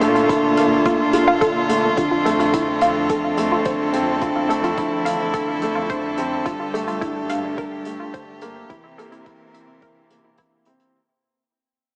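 A straight 4/4 pulse at 107 BPM, set by a brushed hi-hat and joined at 0.3 s by a deep, layered electronic kick, carries this tender, luminous piano and strings electronica cut in F major, where a felt-muted upright piano with audible action noise plays an up-front riff through tape echo, an intimate sul tasto string quartet holds sustained chords, and a dark, bowed cello section with tube saturation anchors the bass, both strings parts pumping with sidechain alongside a round sawtooth pluck arpeggiating in the background with chorus, sidechain pumping and tape echo, all moving over Bbmaj7, F6, Gmadd9 and C7 in a lush hall reverb with a small speaker sound, opening on a drop and fading out from 2.0 s.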